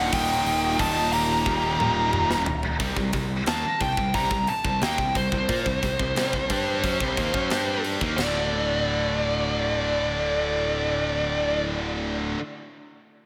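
Opening in half time on an Eb chord, this dark, epic heavy metal excerpt at 89 BPM sets a warm, up-front distorted lead guitar melody with slapback echo and delay over a background second lead line, a double-tracked distorted riff guitar and two bright high-gain riff guitars with slapback echo, plus a growly, direct picked bass and a polished, airy metal drum kit with a tight kick, whose fill from 1.5 s ushers in sections built on C5 and then D5 at 8.2 s, with the drums dropping out at 8.3 s, all in a lush arena-sized hall.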